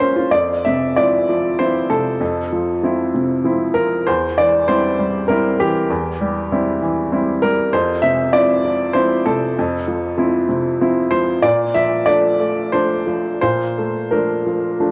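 A rubato piece in 3/4, drifting between 85 and 100 BPM, opens this tender, intimate slice of neoclassical minimalist piano in F major, cut from a longer piece. A solo upright piano with a woody, brilliant tone and short sustain sits up front, its action noise clearly audible as it moves from Fmaj7 through C/E and back to Fmaj7 before settling on Bbmaj7 at 11.4 seconds, spanning E2 to E5. The piano is captured on cassette tape in a home recording, while a moderate, lush hall reverb lends the close, polished playing a soft sense of space.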